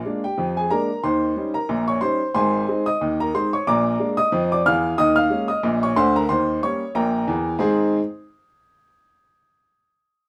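A lightly swung 2/4 at 91 BPM sets up this cheerful, playful ragtime fragment in Ab major, played by a solo upright piano from 0.0 to 8.0 s across a range from Ab1 to F6. The harmony moves through Bb7, Eb7 and Ab, returns to Bb7, then moves to Eb7sus4 before resolving to Eb7, and reaches Ab at 7.6 s as a new section begins. The piano sounds woody and boxy, placed up front and intimate with audible action noise, all set in a light reverb.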